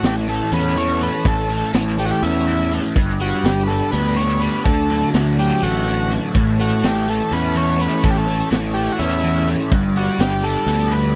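A dry, close 1970s-style studio sound with small room reverb frames this hypnotic, hazy psychedelic rock excerpt in 7/8 at 248 BPM in eighths, where a biting, double-tracked overdriven guitar riff through a rotary speaker and a punchy fuzz picked electric bass sit up front with a vintage drum kit's high-tuned snare and rolled-off top, while a buzzy combo organ carries the melody with light vibrato and tape echo and a lush symphonic string section holds smooth sustained chords in the background over an A, G and Dadd9 progression in A mixolydian.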